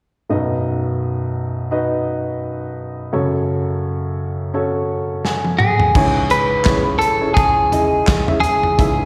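Earnest and dramatic, this piano-driven pop excerpt unfolds in 4/4 with a light swing on the sixteenths, cut from a longer piece. An upright piano carries the accompaniment from the start, its woody tone and long sustain placed up front and dressed in plate reverb and slapback echo, moving from B to F#m before settling on C#m at 6.0 seconds. A piano fill leads into the change, joined at 5.2 seconds by a modern studio drum kit playing its own fill, with bright cymbals, a medium-tuned snare, a tight kick, hi-hat, toms, crash and handclaps. At 5.6 seconds a clean, picked electric guitar takes the melody in a narrow upper range, compressed and up front, with spring reverb, plate reverb, slapback echo and tape echo layered on it. The whole performance sounds like a live gig heard through the venue's PA, with a moderate club reverb and a recital hall ambience around the band.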